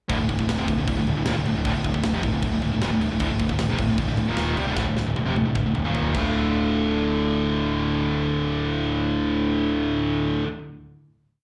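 This dark, heavy metal piece opens at 153 BPM in D minor with three distorted guitars playing a power-chord riff together: a scooped, high-gain guitar up front, one in the background with slapback echo, and a double-tracked overdriven one beside it, all over a growling, punchy overdriven bass that doubles the riff and a tight, big-room drum kit with a rolled-off top whose fill from 4.8 s leads to a final hit at 6.3 s, the whole set heard as a live club gig through the venue's PA.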